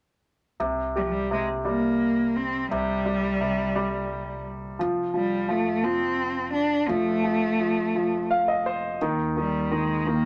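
Melancholic and aching, this six-eight pop ballad excerpt sets a bowed, focused cello melody with vibrato, entering at 1.0 s, over a polished, clear concert grand piano accompaniment with deep bass and a dark, woody pizzicato upright bass, the piano adding a fill from 7.9 s to 9.0 s in a small room with moderate reverb.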